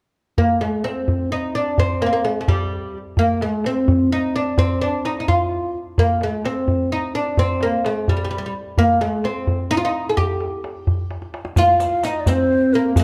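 A bright, woody oud sits up front and carries the melody, its plectrum-plucked double strings giving this brief fragment of a Persian modal piece a hypnotic, longing character in a straight 6/8. From 0.4 s, a tombak played with soft hands keeps time beneath it, tight and warm in its own small room. A drum fill at 11.1 s leads into a new section at 11.6 s, where a breathy, mellow ney enters as a second line, tongued and expressive with vibrato. A compressed, saturated riq with dark jingles joins at the same moment, sitting quietly in the background. A moderate recital hall reverb surrounds the ensemble, and the production leans dark overall.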